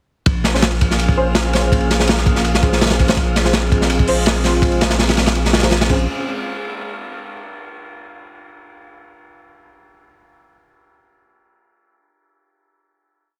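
A chopped, crunchy breakbeat with dark cymbals, deep saturated sub bass sliding through long notes, and a breathy wind-like high texture arrive together at 0.3 seconds, soon joined by soft, syncopated chord stabs trailing dub echo and a warbling, lo-fi tape-like pad, carrying this nostalgic, dark 165 BPM drum and bass jungle piece in Bb minor through a heavily compressed, radio-like drop that moves from Bbm7 to Fm/Bb before a final hit at 6.1 seconds.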